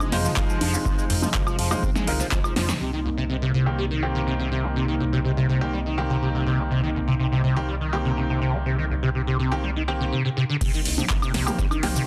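A dense, heavily limited acid house excerpt in C minor at 123 BPM, driving and trippy, where a squelchy, resonant acid bass riff with phaser, overdrive, 12-bit grit and dub echo leads up front over a deep triangle sub bass, bright filtered grand piano stabs and a detuned sawtooth pad pumping in the background, while a punchy analog drum machine with metallic hats, congas, claps and woodblock is joined by a deep kick from 0.4 s, fills at 2.6 s, drops out and returns at 10.6 s as the chords move from Fm7 to Cm7.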